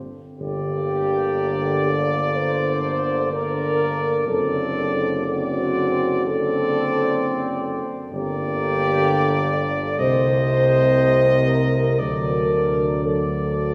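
A dark, tight trombone section sounds first in the background of this yearning, melancholic hymn-like classical brass band passage, joined at 0.4 s by a clear cornet melody with light vibrato, a distant, roomy French horn section carrying the second line, a soft-attacked euphonium and a warm, up-front tuba bass, the playing moving in rubato through a wet church reverb heard from further back in the room.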